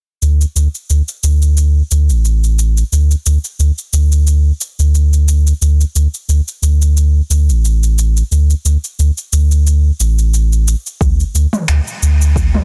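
Organic downtempo at 89 BPM in 4/4 with a light sixteenth-note swing, this peaceful, warm fragment from a longer piece rests on a round, sine-like sub bass, deep and sustained with sidechain pumping and a filter sweep across its full length, beneath a tape-tinged electronic kit of finger snaps, shaker and toms with soft clipping on the snare, joined at 11.0 seconds by an overdriven, deep electronic kick sitting up front in a dry, dense, heavily limited mix.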